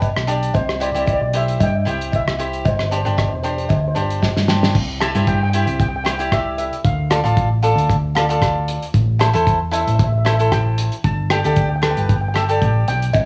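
Calypso at 114 BPM in C major, sunny and carefree, with a mellow, shimmering steel pan carrying the lead from 0.5 seconds over crisp, bright cavaquinho picking, a round, punchy hollow-body electric bass, and a cloth-damped, thuddy drum kit with a fat snare and dark cymbals. Cassette-tape grit colors the pan, cavaquinho and drums, and plate reverb adds space to the pan and cavaquinho, while a distant cowbell rings through the opening until a drum fill at 4.2 seconds leads into a new section on a C chord.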